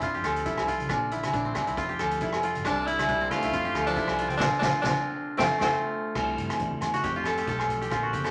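Highlife guitar band music with a sunny, swinging feel, built on a punchy-kicked vintage drum kit with dark cymbals, ringing agogo bells, soft-handed congas in the background, a round, dark fingered bass and a very quiet, clean picked electric guitar under woody, fingerpicked koto arpeggios up front. From 2.7 to 5.7 seconds a raspy, gritty tenor saxophone carries the forceful melody, with a breathy, whispered alto saxophone tracing an intimate second line beneath it, and the band hits a shared accent before the koto takes a dry solo at 6.2 seconds. A large studio reverb wraps the mix, and the piece is cut from a longer work.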